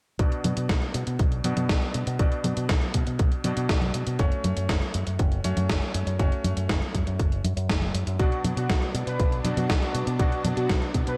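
A punchy, tape-warm electronic kick and an up-front, sampler-style drum machine with congas, hi-hat and a gated-reverb snare drive this straight, bittersweet and nostalgic italo disco cut, while a bright fingered electric bass with an envelope filter anchors the low end. A clear, vintage electric grand piano adds stabs through a low-pass filter and delay. At 8.2 seconds a fat, brassy analog synth brass melody with chorus, delay and a cassette tape tinge arrives alongside lush, bowed studio strings holding sustained chords in the background, all within light digital ambience.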